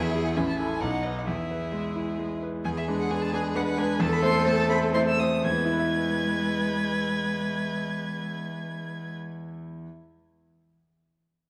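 A cheerful, lively passage from a quick classical-period movement for piano quartet in E major opens with all four players sounding together, set in a moderate concert hall reverb with a dark production. The first violin carries the melody high in its range, its rich, focused tone heard from a distance with vibrato, while the second violin adds a clear, smooth second line up close. The cello, rich and even with vibrato, supplies another second line, and the bright concert grand piano sits up front with a brilliant accompaniment, deep bass and long sustain. The tempo moves between 115 and 136 BPM in 3/4 with a rubato feel, slowing down between 2.0 and 5.4 seconds as the harmony turns to E7 and then Am/E before returning to E. The strings stop at 9.2 seconds, leaving the piano to ring alone until the cut at 10.0 seconds.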